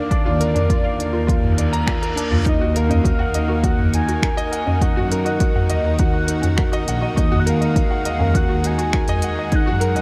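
Piano and strings electronica in Eb minor at 102 BPM, hypnotic and melancholic, where a clear grand piano riff with digital delay and a velvety synth lead with chorus and phaser ride over a lush detuned pad, a quiet analog pluck arpeggio, bowed sul tasto double basses pumping with the sidechain, a punchy up-front electronic kick and a deep house kit of finger snaps, smooth hats and toms, while a reverse cymbal sweeps in from 1.5 to 2.5 seconds as the harmony moves from Bb/Eb to Ebm in this dark, lightly reverberant excerpt.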